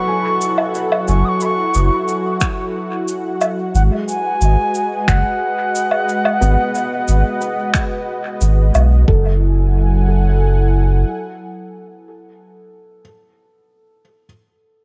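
Light reverb and small-room ambience frame this hazy, meditative ambient dub excerpt at 90 BPM in F# dorian. A pure, mellow wooden flute with vibrato carries the dub-echoed melody until 8.4 s over a smooth, detuned, chorused analog pad holding F#m9 and G#m7 chords, soft felt-muted upright piano arpeggios with tape echo in the background, a round sine sub bass up front, distant cabasa, woodblock and finger snaps with dub echo, and an overdriven electronic kick drum entering at 2.4 s. Once the pad fades at 12.5 s, the piano lingers alone to 14.3 s.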